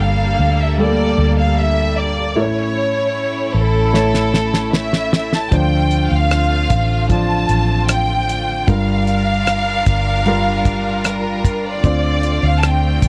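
A lush, vibrato-rich violin section sings the melancholic, longing melody with a slapback echo over an intimate grand piano with audible action noise, clear sustained studio strings and a round, foam-muted electric bass, and a damped 70s drum kit with a fat snare and tight kick joins them on a fill at 3.9 seconds, giving this pop ballad excerpt a dry, close 1970s studio sound.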